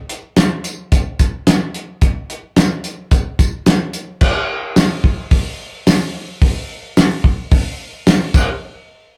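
Rock in a straight 4/4, this short passage cut from a longer piece carries a dusty, wistful mood. A cloth-damped, thuddy drum kit sits up front, with a fat snare, a tight kick, hi-hat and dark crash cymbals, its top end rolled off. A jingly tambourine plays in the background, both parts running together from 0.1 seconds to the close. The groove moves from one section into a second at 4.2 seconds. The sound is a rough rehearsal-room recording with moderate small-room reverb and a warm, saturated grain.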